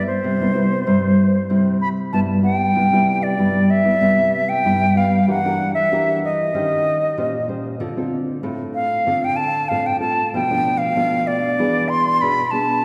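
An airy silver concert flute carries the melody up front with vibrato and tongued notes, over a full-bodied, thumb-plucked classical nylon-string guitar, also up front, in this lively, playful samba and choro passage in C major at 95 BPM in straight 4/4. Both instruments play throughout the clip, cut from a longer piece, as the harmony moves from Cmaj7 through Em7b5, Eb6 and Dm7 to Bm7b5 and E7. A wet church reverb with a 2.7-second decay gives the recording the spacious resonance of a church or concert hall.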